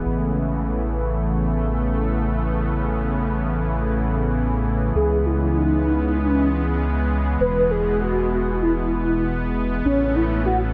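Bathed in a lush hall reverb, this dreamy, uplifting synthwave excerpt floats in free time as a thick, detuned unison pad with chorus and gritty 12-bit sampler character holds sustained chords over a deep, round analog bass, moving through A, C#m, E and back to A, while an expressive, smooth synth lead with vibrato, chorus and delay enters at 5.0 seconds to carry the melody.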